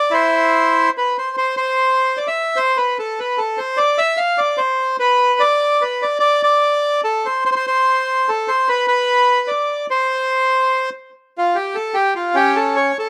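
Dry and open, this outdoor recording has little reverb, so the instrument sits close and clear with nothing around it. It is a short cut from a longer musette, in C major and 3/4 at 147 BPM, with a straight feel and tuning set to A4 = 439 Hz. A single bandoneon carries everything as a solo from start to finish, its reedy, bright, airy tone placed up front and ranging from Db4 to F5. The mood is nostalgic yet whirling. The opening phrase passes quickly into a longer restatement of the same material, and at 11.1 seconds the music turns to a contrasting passage that runs until the clip ends at 13.1 seconds.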